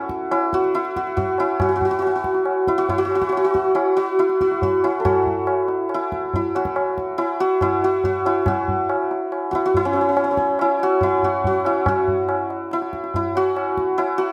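A brilliant, shimmering hammered santur opens this solemn, meditative Hindustani classical excerpt up front in the mix, joined at 0.1 seconds by a high-tuned tabla that sits further back with a ringing, live-room tone, and the pair move into a new section at 11.9 seconds under light reverb and close, detailed miking.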